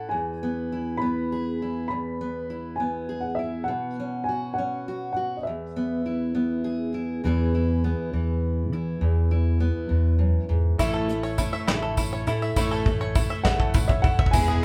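A dark, woody upright piano with audible action noise carries the melody of this hopeful, anthemic indie folk excerpt in 6/8, over a full-bodied, up-front fingerpicked steel-string guitar. A round, amped fingered electric bass enters at 7.2 s as the arrangement builds, and at 10.8 s a shimmering twelve-string guitar, a vintage grand piano in the background, a twangy banjo playing arpeggios, a jingly tambourine and a soft brush drum kit with a tight kick join in, the kit playing a fill. Lush bowed strings with vibrato add sustained chords just before the close, with the band playing live in one room with moderate reverb and a faint mains hum.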